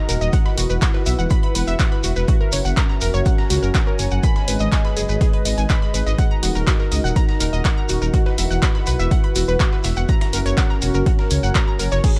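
Melodic techno at 123 BPM in a dramatic, cinematic mood, cut from a longer piece, where a dry, punchy up-front kick and rumbling, detuned saw bass drive a sidechain-pumped bed of moody, nasal analog pad chords, round warbling pluck arpeggios with chorus and dub echo, and a lo-fi, nostalgic tape-like pad with phaser in the background, while an analog drum machine's crash, handclaps and hi-hats, a very quiet gritty sampler-style kit and a grainy shekere fill out the groove over Esus2, F#, G#m and D#m.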